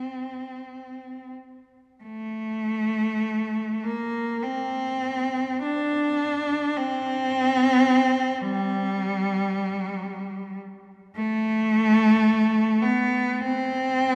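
Nostalgic and serene, this short classical passage, cut from a longer piece, features a single cello playing alone in free time with an expressive feel. The bowed cello sits up front, its tone rich and focused, with vibrato colouring its line as it moves between G3 and D4. A brief opening idea gives way at 2.0 seconds to a longer second section that carries through to 14.2 seconds. The instrument is bathed in a wet church reverb whose long decay lets each phrase linger in the space. The result feels intimate yet spacious, like a private reflection heard from within a resonant hall.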